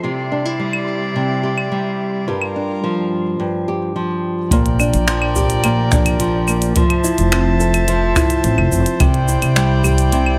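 A fingerpicked nylon-string guitar sits up front with delay and a filter sweep over its arpeggios, alongside a nasal, reedy string quartet holding sustained chords and a flickering, grainy texture in the background until 3.4 s, joined at 0.7 s by an overdriven click kit of cabasa, claves, finger snaps and clicky hi-hat, before a woody pizzicato upright bass and a boomy brushed kick drum enter at 4.5 s in this playful, warm folktronica excerpt.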